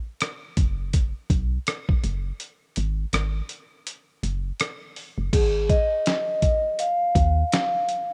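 A swung sixteenth-note feel in 4/4 carries this smoky, cool jazz-hop fragment, cut from a longer hip hop piece. A gritty, compressed sampler-style kit sits up front, with a thumpy kick, medium-tuned snare, rim click, hi-hat and crash, and cassette tape and a small-room re-recording give it a dusty edge. A woody, round FM bass with a fast attack and dark, decaying notes enters just after the drums and holds a low register. After a break from 2.4 seconds, a mellow vibraphone played with soft mallets takes a solo at 5.3 seconds, its metallic, ringing tone carrying a slow motor vibrato and the same tape character. The home cassette recording is framed by a digital ambience.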